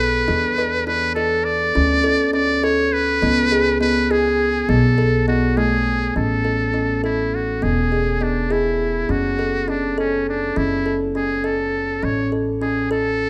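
A brilliant, buzzy metal-muted trumpet sings the melody with vibrato over ringing, woody thumb-plucked kalimba arpeggios and a dark, thumpy pizzicato upright bass in this restless yet hopeful contemporary chamber piece in 5/8, cut from a longer work, set in a moderate recital-hall reverb and moving into a new section at 6.2 seconds.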